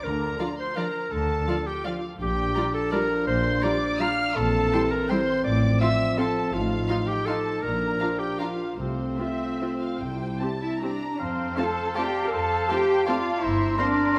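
A bright, up-front solo clarinet carries a second line over veiled, con sordino violins singing the melody in this festive, sweeping excerpt of an orchestral ballroom waltz in F major, moving in a rubato 3/4 at 140-180 BPM, with muted cellos and double basses anchoring the bass, muted violas and a second violin section filling in behind, a mellow French horn section holding sustained chords, and an airy distant flute and a roomy oboe joining at 11.2 s, all set in a moderate concert hall reverb.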